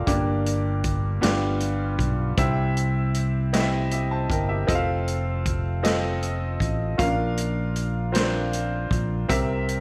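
A clear, open concert grand piano sits up front with deep bass in the accompaniment, joined by a round, fingered electric bass, in this slow, uplifting gospel excerpt in Bb major, set in 6/8 at 52 BPM with a straight feel. A swinging big-band drum kit, natural-sounding with hi-hat, a medium-tuned snare and a punchy kick, enters at 0.1 seconds. The hopeful harmony moves from Gm through G7, C, F and Bb to C7, all inside a moderate echo chamber reverb.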